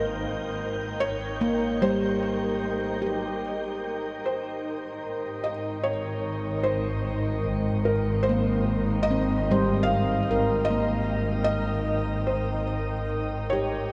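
Peaceful and luminous, this ambient passage in Ab major drifts at 74 BPM in 3/4 over a single Abmaj7 chord: a soft, felt-muted upright piano carries the melody through delay, a bright, ringing handpan spins arpeggios, a glassy, warbling FM pad holds chorused chords, and a lush, bowed double bass section with expressive vibrato anchors the low end and fades out during the first 4.3 seconds, while an airy, breathy wind-like texture hovers until 4.3 s, all bathed in a long shimmer reverb.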